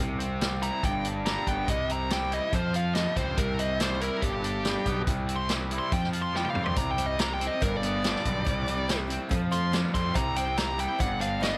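A bright, double-tracked, overdriven garage guitar riff and a round, punchy fuzz bass open this swaggering, sunny classic rock excerpt in C major at 142 BPM, joined by a vintage drum kit with a tight kick and rolled-off top and, from 0.6 seconds, a dark, distorted, bluesy lead guitar soloing up front with slapback echo, while after a drum fill a full-bodied, very quiet steel-string acoustic guitar and a metallic, saturated cowbell slip in at 6.8 seconds, all under light reverb.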